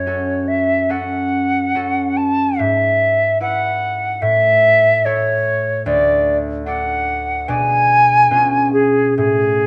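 The rhythm moves in a flexible, rubato four-beat pulse, giving this romantic classical duo for flute and harp an elegiac, yearning character. A silver concert flute carries the melody throughout, up front, with a pure tone, expressive vibrato and a crisp attack on each note. Beneath it, a concert harp plays a fingerpicked accompaniment whose ringing, acoustic strings sit at a lower level than the flute. The harmony travels from F# minor through E/G#, A and D before darkening on G#dim/B at 7.5 seconds and a C#7 over B at 8.3 seconds. A moderate stone-room reverb surrounds the pair, and the fragment breaks off at 9.7 seconds, lifted from a longer piece.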